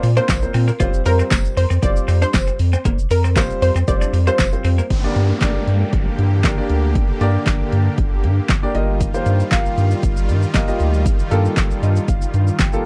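A straight 4/4 deep house drum kit with punchy kick and fat snare drives this carefree, euphoric dance-pop excerpt, as a round, sidechain-pumped analog bass sits up front beneath a polished grand piano, while a twangy, chorus-soaked twelve-string electric guitar riff, a detuned analog pluck melody with tape echo and a jingly tambourine in the background open the passage before giving way at 4.9 seconds to a lush supersaw pad and an electronic downlifter, the piano adding a fill at 11.6 seconds, all in a dry, close 1970s-style studio sound.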